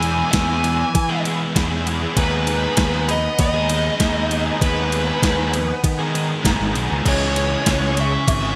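A crisp, thumpy 8-bit drum machine, overdriven, gated and up front, drives this restless, bittersweet indie rock fragment at 98 BPM in 4/4. A growly fuzz fingered bass and two picked riff guitars, one thick and fuzzy and the other raw and bright with chorus and delay, support a dark, smooth overdriven lead melody, while a ringing glockenspiel with soft plastic mallets plays a bell-like second line in the background. The harmony moves from E to G#m/D# to C#m inside a lush hall ambience with a bright 1980s-style digital production.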